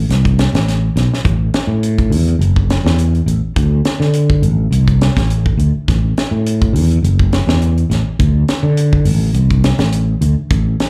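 Afrobeat with a defiant, driving mood, this short cut from a longer piece moves at 104 BPM in 4/4 with a light swing on the sixteenths. A fretless electric bass carries the low end from the start, its bright, growly, amped tone sitting up front as it ranges from F#1 to D3. A tight funk drum kit joins at 0.1 seconds with hi-hat, kick drum and snare drum, sounding acoustic and natural, with a high-tuned snare and a tight kick placed close to the listener. The whole passage holds to a single section, with the bass running to about 10.7 seconds and the drums continuing to about 10.9 seconds. It comes across as a live gig heard through the venue's PA, with a touch of club reverb around an otherwise dry sound.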